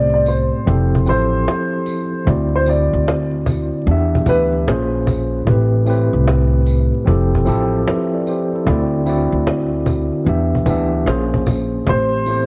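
A cassette-recorded home sound with vinyl crackle and a small, lightly reverberant room frames this melancholic, reflective lo-fi hip hop excerpt at 75 BPM in A minor, swung on the 16ths, where a dark, worn, slightly detuned upright piano with audible action noise and long sustain carries the melody through tape and analog delay until 4.5 seconds and returns at 11.9, over a clean tine electric piano comping up front through its built-in speakers, a thumpy, woody pizzicato upright bass, a snappy, close cajon played with soft hands, and a faint, jingly vintage tambourine.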